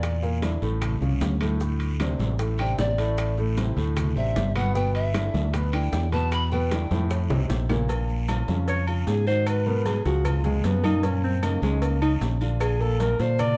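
Afro-Cuban jazz with a driving, sultry feel, this piece opens with a breathy bamboo pan flute solo, tongued with vibrato and an audible chiff, until 7.1 seconds, over a woody, natural upright piano and a round, up-front fingered electric bass. A dense percussion bed of ringing, distant congas, tight high-tuned bongos and cowbell, vintage metal-shell timbales with agogo bells, dry woody claves, a raspy guiro and grainy maracas sits mostly in the background. A drum fill then leads into a mellow alto saxophone solo from 8.7 seconds, up front with subtone, scooped notes and a smooth top, all within a dark production with light reverb.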